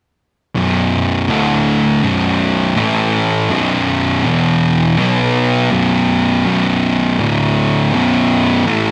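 Set in a moderate large studio reverb, this hypnotic, heavy metal fragment from a longer piece brings in two thick, dark fuzz guitars up front at 0.5 and 0.6 seconds, both picking a distorted low riff that keeps circling back to B5 between D5, A5 and E5 power chords.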